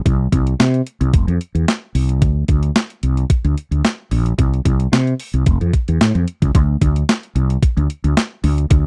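A dry, close recording with a 1970s studio character frames this short cut from an early-eighties boogie funk groove, slick and late-night at 111 BPM in a straight 4/4, tuned to A4 = 436 Hz. A crisp 8-bit drum machine sits up front with a thumpy kick, medium-tuned snare, hi-hat and handclaps, its sampler-style hits overdriven and re-recorded in a small room. Alongside it, a mellow fretless electric bass, dark and round, moves between F1 and C3 from start to finish as the music shifts into a new section at 6.5 seconds.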